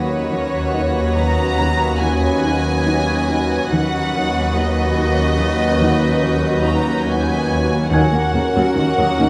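Cinematic suspense film score at 71 BPM in 5/4, tense and mysterious, built on a rich, intimate studio violin section carrying the melody over a floating symphonic violin second line, a high violin texture, a dark, woody viola section and a distant cello riff, all bowed sul tasto, while double basses, a very quiet cello and a swarming, detuned drone with ring modulation hold a low D#2 and a blurred granular cloud pad sustains chords. Barely audible soft-mallet timpani sound at the opening and again from 7.9 s, when the harmony moves from Badd9/D# to Ebm7, and a delicate, tinkling music box enters at 6.7 s. The whole sits in a wet recital hall reverb, and the passage is cut from a longer piece.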